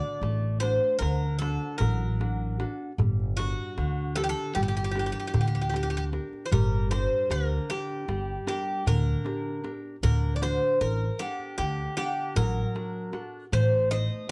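A metallic, picked Greek bouzouki carries the melody up front, its double strings and occasional octave-doubled courses ringing through a plate reverb in this reflective, wistful Greek folk piece for a bouzouki band. The music moves in 9/8 at 153 BPM counted in eighths with a straight feel, in G harmonic minor and tuned to A4 = 435 Hz, its harmony shifting from D to Gm and back to D before closing on Adim. A fingerpicked classical nylon-string guitar supplies the accompaniment, with finger squeak audible. A woody, thumpy pizzicato upright bass on steel strings sits up front from 0.2 s, while a clay-shell darbuka with a natural skin stays close and dry in the background. The production is dark and warm with light reverb, and the recording is cut from a longer piece, moving into a second section at 6.5 s.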